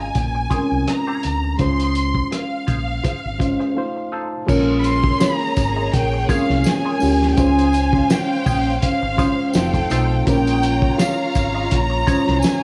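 Silky and cinematic, this cut from a longer piece of lush 1970s-style soul rides a lightly swung groove, with an expressive, close violin section singing the melody over a reedy, worn and slightly out-of-tune electric piano, a round, up-front fingered bass and a muffled, gritty drum kit with a fat snare and dark cymbals. A compressed semi-hollow guitar with wah plays a riff in the background, and the electric piano adds a fill from 3.0 seconds into a brief break. At 4.5 seconds a smooth, bowed string section takes up a second line and a jingly tambourine joins, all inside a light, small-room ambience.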